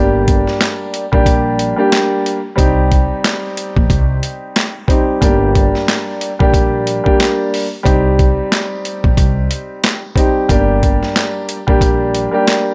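A short cut from a longer boom-bap hip-hop piece opens with an upright piano and a plucked upright bass together, and the drums join at 0.3 seconds. The mood is dark and rough-edged, with a swung sixteenth-note feel over chords that alternate between G minor and C minor. The piano sits up front with a natural, woody tone and long sustain, shaped by high-pass and low-pass filters, while the acoustic bass plays pizzicato low notes with steel strings. The sampler-style kit is compressed, pitched down and gritty, pairing a thumpy kick with a high-tuned snare, hi-hat and handclaps, and it also sits up front. A small room ambience surrounds the parts, and the bass stops at 12.3 seconds, just before the piano and drums finish at 12.7 seconds.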